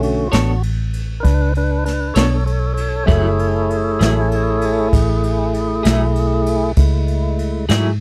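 A dry, close recording with a 1970s studio sound frames this short, mournful slow blues in a straight 12/8. A fat, clean tonewheel organ takes the lead in sustained chords through a slow rotary speaker, with key click and vibrato, moving from Bm9 to F#m9 at 3.1 seconds. Beneath it, a dark, round, foam-muted fingered electric bass and a brushed jazz kit with punchy kick, snare and ride sit up front, while a hollow-body semi-hollow guitar adds clean, picked accompaniment with tremolo from 0.3 seconds.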